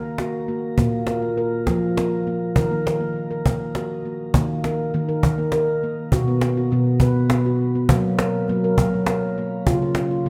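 A ringing handpan opens this meditative world piece, its stainless-steel tone struck with the fingertips as it spells out arpeggios that span Bb2 to B4. A moment later, at 0.2 seconds, a woody cajon joins, its faint snares adding a light rasp while both instruments sit up front. The tempo is an unhurried 68 BPM in a straight 6/8, and the music rests in Eb minor, drifting from a rootless Ebm through Bb5 and back before a second section at 4.3 seconds moves through Eb5, B5, Gb and Db. Tape echo and shimmer reverb trail the handpan's notes, giving them a hypnotic halo. A wet recital hall reverb and small room ambience surround the pair, and the passage ends as if cut from a longer piece.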